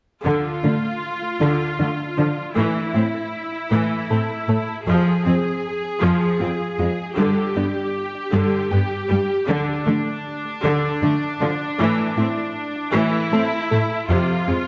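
Relentless and vast, this cinematic excerpt in D minor moves at a slow 52 BPM in 6/8, with chords shifting from Dm through A5, Fm and G5. A bowed viola section sits up front, clear and intense with vibrato, over a lush cello section playing the bass line with soft attacks and expressive vibrato. A round, tine-like synth pluck with a dark, detuned edge runs arpeggios through chorus and delay, all bathed in the roomy reverb of a scoring stage.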